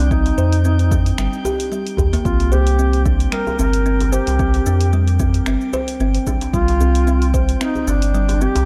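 Organic downtempo at 112 BPM in C minor with a hypnotic, meditative feel and a light 16th-note swing, where a mellow, distant duduk sings a folk-style melody through tape echo over a round, up-front sub bass pumping with sidechain, woody kalimba arpeggios scattered through digital delay, a glassy drifting texture with chorus and reverb in the background, a punchy electronic kick that drops out at 7.5 seconds, a deep house kit of cabasa, finger snaps and hi-hat, and a tight, cracking djembe, all set in a dark, small-room production whose harmony moves from a C minor chord to a chordless stretch at 2.3 seconds.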